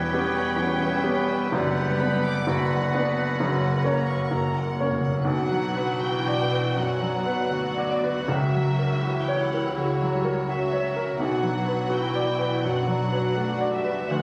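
Piano and orchestra open together in this passionate, tragic Romantic excerpt in B minor, with a polished, up-front baby grand carrying the melody alongside intimate, sul tasto violins while a second violin section, oboe, hollow flute and clarinet add second lines over mellow horns and trombones that fall away by 4.9 seconds. Taken with rubato at 62-86 BPM in 4/4, the music moves from C#m7b5/E through Bm and F# harmonies, with very quiet hard-mallet timpani entering at 1.5 seconds and a timpani fill at 3.4 seconds before the second section arrives at 5.2 seconds. Violas, cellos and dark double basses provide a soft-attacked string foundation in a moderate stage reverb, though the phone recording adds club ambience and compression.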